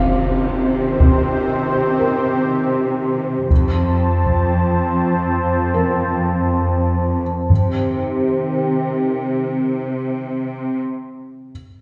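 Set in a wet recital hall and heard from further back in the room, this vast, relentless cinematic excerpt blends orchestral and electronic scoring, opening with a huge, dark impact in the background as a detuned sawtooth pad with chorus and a low-pass filter holds evolving chords up front over a rich, lush bowed cello section with smooth vibrato. Solo taiko drums struck with heavy sticks sound close and acoustic from 1.0 seconds, while a soft felt-muted upright piano with short sustain and delay adds an intimate, mellow texture behind them until 7.5 seconds. The harmony moves from C minor to F and back to C minor, where the taiko lands one last brief hit as the pad and cellos carry on.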